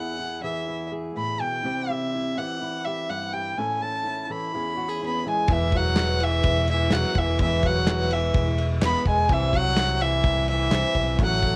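A straight 4/4 pulse drives this uplifting, nostalgic indie folk excerpt, where a dark, woody bowed fiddle with light vibrato carries the melody up front over a fingerpicked steel-string acoustic guitar with audible finger squeak until 7.4 s, a clear, distant French horn adds a roomy second line from 5.0 s, and from 5.5 s the arrangement builds as a mellow, very quiet grand piano, a boxy picked ladder-braced acoustic guitar in the background, a round, punchy picked electric bass with transformer saturation, and a loose small-room drum kit with a tight kick, snare and ride join in, with crisp handclaps set behind them from 6.0 s, all under light reverb in a home cassette recording.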